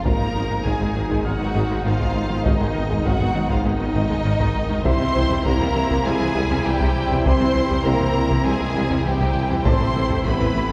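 Bathed in the long wash of a cathedral-like hall, this tense, relentless passage from a hybrid orchestral and electronic film score sets a lush, vibrato-rich violin section carrying the melody over a second violin line, an intense viola accompaniment, and sustained chords from distant French horns and tight trombones. Beneath them, cellos, double basses, a roomy tuba, a thick detuned saw bass and a round, wave-folded analog bass riff form a deep low end. Close, dry taiko drums struck with hard sticks drive the music forward, while a tight, filter-plucked sequenced synth arpeggio and a brilliant concert grand piano texture shimmer quietly in the background.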